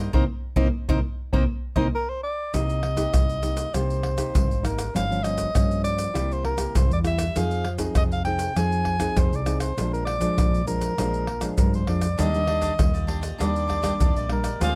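Samba and choro in C minor at 100 BPM, this yearning, nostalgic passage is cut from a longer piece and moves in a straight 4/4 feel. A breathy soprano saxophone carries the melody up front from 1.9 seconds, its soft attack and whispered, intimate subtone giving it a mellow jazz character. Beneath it, a nylon-string guitar plays thumb-plucked classical accompaniment with audible finger squeak, while a dark, growly fretless electric bass with a round, hollow-bodied tone anchors the low end. A crisp, picked cavaquinho appears briefly at the opening and returns at 12.2 seconds, and a percussion section of deep surdo, tube shaker, pandeiro and tamborim sits up front with hard hands in a small-room sound. The harmony moves from Cm7 through Gm7b5, C7, Fm7 and Bb7 before settling on Ebmaj7, captured with close, detailed microphones and light reverb.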